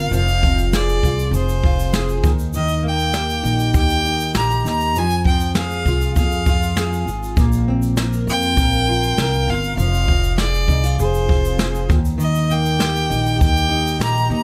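Studio ambience frames this short cut from a longer acoustic pop piece, heartfelt and sunny in mood and tuned to A4 = 442 Hz. At 99 BPM in a straight 4/4, a clear, smooth bowed violin sits close and up front with even vibrato, carrying the melody from C5 to Bb5. Beneath it, a fingerpicked, plugged-in jumbo steel-string acoustic guitar, double-tracked and full-bodied with the warm tone of old strings, supplies the accompaniment. A dark, woody pizzicato upright bass anchors the low end, while an airy, polished jazz kit played with brushes adds a boomy kick, a medium-tuned snare and shaker from 0.1 seconds. The harmony moves through Fm, Eb, Fm, Bbsus2, Fm and Eb.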